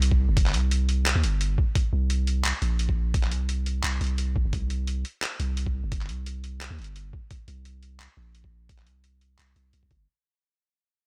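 Dark and cinematic, this short half-time drum and bass cut, lightly swung, pairs a deep, sine-toned 808-style bass, up front and decaying under a filter sweep across its full 10.1 seconds, with a thumpy, pitched-down electronic kick and a gritty, tape-warm sampler-style kit of handclaps and hi-hat, all set in digital ambience on a dry hardware recording that fades out throughout.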